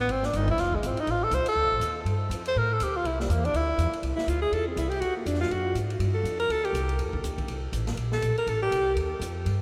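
Bathed in a vast, echoing cathedral reverb with a faint mains hum, this playful, relaxed small-group swing and bop piece in F major moves at 243 BPM, as a mellow tenor saxophone with light vibrato and scooped notes solos for the first 4.0 seconds before a bright alto saxophone takes over at 4.2 seconds, all above a woody, thumpy pizzicato upright bass on gut strings and a quieter open jazz drum kit with dark cymbals and a boomy kick.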